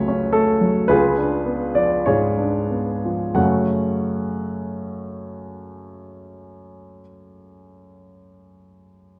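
Romantic classical character piece for solo grand piano, brooding and stormy, heard as a brief cut from a longer work, where the polished, up-front piano with its short sustain plays with free rubato and slows through the opening 3.4 seconds before settling into a new passage, all set in a dark production with a lush recital-hall reverb.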